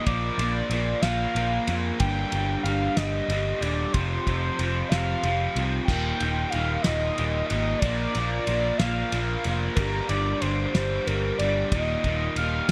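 Indie rock in 6/8 at 62 BPM in Eb major, upbeat yet wistful, cut from a longer piece and moving through Bb, G5, F5 and Ebadd9 chords. A gritty, screaming synth lead with distortion, chorus and delay carries the melody over two picked guitar riffs, one slightly broken-up and lo-fi from a small old amp with lush chorus, the other raw, bright and overdriven. A round, punchy fingered bass sits up front with a cloth-damped, thuddy kit of dark cymbals, fat snare and tight kick, while a very quiet tonewheel organ on a slow rotary speaker adds sustained chords from 5.9 seconds, all in a bright 1980s-style digital production with light reverb.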